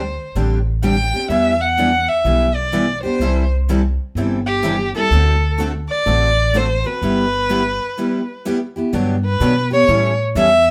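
Swung eighths at 126 BPM in 4/4 carry this charming jazz manouche fragment in G major, cut from a longer piece, where an expressive bowed violin sings the melody up front with vibrato, portamento and a soft attack over a woody, thumpy pizzicato upright bass on gut strings, while two bright picked steel-string acoustic guitars, one a full-bodied jumbo and the other a concert model, supply the accompaniment, all caught live in one room with moderate studio reverb and a break at 8.0 s before a new section opens at 8.9 s.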